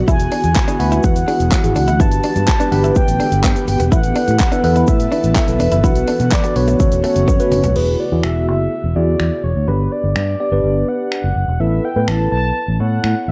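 Confident and energetic, this dance-pop excerpt sits in a dreamy, reverb-soaked mix, where a mellow, horn-like synth lead with chorus, delay and vibrato carries the melody over a punchy, layered pop drum kit of kick, hi-hat, finger snaps, handclaps, toms and crash, a dark, round, foam-muted fingered bass and a tine electric piano with phaser, both pumping with sidechain, while an ethereal, airy pad, a lushly chorused clean electric guitar riff and a grainy tube shaker linger in the background until a drum fill at 7.3 seconds, after which they drop away by 7.8 seconds.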